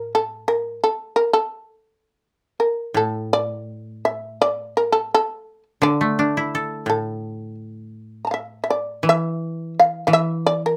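The rhythm moves in a loose, rubato 2/4, drifting between roughly 78 and 90 BPM. This short fragment of Japanese traditional chamber music sits in the miyako bushi mode on A, and its mood is austere and calm. The plectrum-plucked, fretless shamisen carries the melody throughout, sitting up front with a buzzing, percussive bite in its upper register. The koto, played with fingerpicks, supplies a mellow, woody, dry accompaniment from its lower and middle range; it sounds briefly at the start, falls away at 0.8 s, and returns at 2.9 s to support the shamisen through a new passage until the end. Close, detailed miking with light reverb keeps both instruments intimate and clearly defined.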